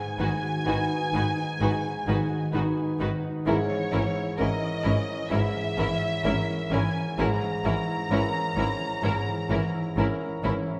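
A dark, mellow baby grand piano sits up front in this short cinematic film-score excerpt, its long sustain carrying the accompaniment from G#2 to B4 over a slow, rubato 64 BPM in 4/4. Above it, a distant, lush violin section sings the bittersweet melody with smooth, even vibrato, while a second violin line joins at 0.2 s. Violas, cellos and a focused double bass section fill in the background with bowed ensemble tone, the cellos and basses holding a low G#. A ringing, fingerpicked concert harp adds arpeggios behind the strings. The harmony moves from G#m7 to A#dim/G# at 3.5 s, and a wet concert hall reverb wraps the orchestra in a longing, emotional glow until the piano and harp end at 10.8 s.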